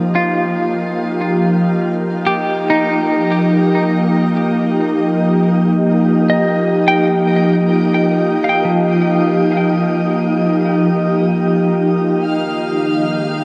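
A glassy FM pad with ensemble chorus and a slow, ethereal bloom holds sustained chords up front while a clean, hollow-bodied electric guitar picks arpeggios through tremolo and delay, and a biting studio violin section adds a brief high texture from 12.2 seconds, all in a peaceful free-time ambient excerpt in E-flat major, bathed in shimmering reverb and the warbling pitch drift of worn cassette tape.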